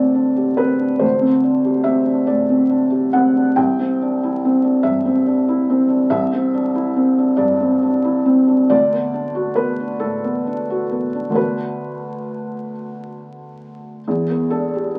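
A felt-muted upright piano, soft, mellow and intimate up front, plays alone through this melancholic, reflective neoclassical minimalist excerpt in a slow, rubato 6/8 at 46 BPM, spanning C2 to G5 over chords moving from D7sus4 through Cadd9 and Bm7/D to Em7 at 14.1 seconds, all set in a wet club reverb beneath the crackle of a very old 78 rpm record.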